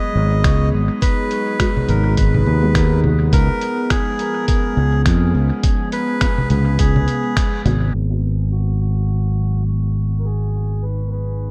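Ambient dub at 104 BPM in G# dorian, hazy and spacious, with a 16th-note swing and chords moving between G#m7 and C#7. A reedy, breathy melodica carries the melody through dub echo over a warbling, nostalgic tape-like pad dressed in chorus, phaser and reverb. A fingered electric bass sits up front with tube saturation, while a thumpy, pitched-down kick and a muffled, lo-fi sampler kit of congas, finger snaps and filtered hi-hat add a roomy pulse alongside a very quiet, detuned chord stab. After a band accent at 7.4 seconds, the drums fall away and a filter sweep runs from 7.9 to 11.5 seconds as this fragment of a longer piece closes.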